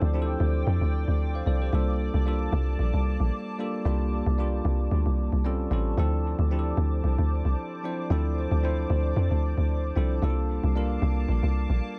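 A bell-like tine electric piano trailing dub echo and a hollow, soft, flute-like pad carrying ensemble chorus open this late-night, hypnotic amapiano excerpt alongside a deep, round log drum bass that sits dark and up front, its percussive, fast-attack hits decaying under lightly swung sixteenths as the harmony moves through Dm7, C13sus4 and A7alt, until the bass drops out at 11.8 seconds in a dry, echo-heavy mix.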